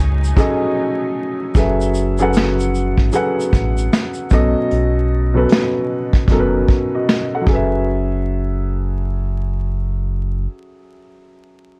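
Reflective and hazy, this lo-fi hip hop excerpt in swung 4/4 pairs a dark, woody upright piano, softened by a low-pass filter and plate reverb, with a deep sine sub bass with octave, while a lush bowed string section sounds only until 1.5 s, a brushed vintage drum kit with a punchy kick and 12-bit sampler grit plays from 0.2 s to 7.7 s, and vinyl crackle hovers over chords moving from F#m69 through F#m11 and B7.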